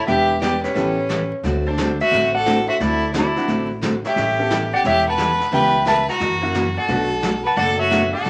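A clean lap steel guitar and a clear, intense fiddle open this playful, down-home western swing excerpt together, the steel carrying the melody with slide and volume swells while the bowed fiddle, up front with light vibrato, sings a second line beneath it. At 176 BPM in 4/4 with a swung eighth-note feel, the tune sits in A mixolydian and moves through chords such as Em7, A9 and D9 before turning toward C#m7b5, F#7 and Bm7 near the close. A full-bodied, picked dreadnought acoustic guitar and an intimate upright piano, woody and tucked in the background with its action noise audible, fill out the accompaniment from 0.1 seconds. Pizzicato upright bass adds a dark, steel-strung low end, and a vintage brush kit works the snare and hi-hat with a rolled-off top in a studio room. The whole band sits in a wet club reverb with a layer of vinyl crackle, giving the 8.3-second passage an old-time dance-hall glow.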